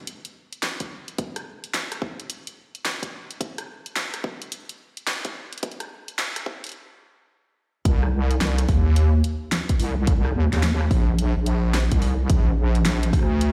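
Played back on a big sound system in a bare room with a large studio reverb, this gritty, funky glitch hop cut from a longer piece swings its 16ths at 108 BPM in C minor, as punchy layered electronic kick and a fat-snared pop kit of hi-hat and rim click build up from the start, pause at 6.7 seconds, then drop at 7.9 seconds into a heavy, saturated, detuned square-and-sine wobble bass with overdrive and chorus, sitting up front between Bb1 and Eb2.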